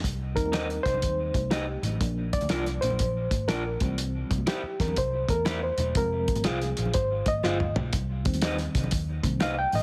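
A swung 4/4 groove at 122 BPM drives this passionate, urgent 1960s-style soul excerpt in C minor, tuned slightly flat to A4 = 437 Hz, as a cloth-damped drum kit with a fat snare and tight kick thuds up front beside a dark, foam-muted picked bass and very quiet, high-tuned congas struck with hard hands. A reedy, worn electric piano, lightly overdriven with medium tremolo and a touch out of tune, takes the lead from 0.3 s, while a slightly broken-up, lo-fi electric guitar adds tape-echoed stabs from 0.5 s. The harmony moves from Cm through Bb, C and Fm before a drum fill at 7.4 s returns it to Cm, all under light reverb and a heavily compressed, radio-like sheen.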